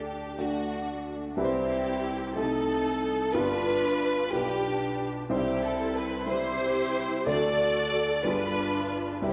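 A dark, lush string section, bowed sul tasto with vibrato and sitting up front, carries the melody in this jubilant, uplifting gospel excerpt in G major at a slow 61 BPM in 6/8, while a woody upright piano accompanies close by, both set in a wet, church-like reverb that softens the top end as the chords move from C through Cm6 and G7 to a closing G7b9.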